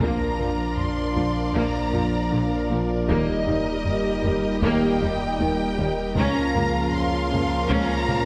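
Brooding and vast, this cinematic cue blends orchestra and electronics in a hybrid film-score style, moving at a slow 78 BPM in a straight 4/4 and cut from a longer piece. Distant, lush violins carry the melody with smooth vibrato, while a second violin line sits softly in the background and rich, even violas fill in the accompaniment beneath them. Very quiet French horns and clear, vintage-toned trombones hold sustained chords alongside a hollow, flute-like pad treated with chorus, as a dark, ringing harp-like synth pluck traces arpeggios with a filter sweep and phaser. The low end rests on a deep, full sub bass with an octave layer, supported by very quiet cellos and focused double basses, while a taiko ensemble struck with hard sticks plays in the background. The harmony moves from Bb to Eb at 3.1 seconds and to Bbm/Db at 6.2 seconds, with a drum fill at 8.1 seconds, all set in the wet reverb of a scoring stage.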